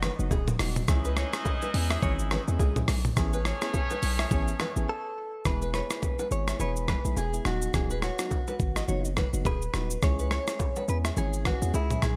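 A clear horn section with tight octave doubling opens this joyful, romantic afrobeats excerpt at 105 BPM in E major, over a warm fingerpicked nylon-string guitar riff with digital delay, a punchy, heavy 808-style bass, a gritty, compressed breakbeat kit with a thumpy kick, soft bongos and congas, and mellow chorused electric-piano-like synth keys, until a break at 4.9 s brings in a bright, direct-recorded clean electric guitar melody with delay, all set in light digital ambience with bright 1980s-style digital production.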